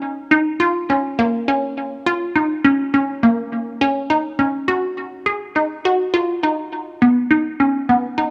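A lone resonant blip pluck opens this brooding, driving progressive instrumental fragment, playing solo from 0.0 to 8.3 seconds in a range from A#3 to G#4. Its squelchy, juicy tone blends square and sawtooth waves with a detuned edge and a noise layer, and each note has a fast attack and short decay shaped by a filter pluck. A phaser and tape echo colour the bright, up-front line, which moves at 206 BPM counted in eighths within a straight 9/8 metre in G# dorian, tuned to A4 = 439 Hz. The passage shifts into a new section at 4.7 seconds. A moderate plate reverb with a 2.8-second decay sits around the sound, and the echo-heavy mix lets repeats trail behind the notes.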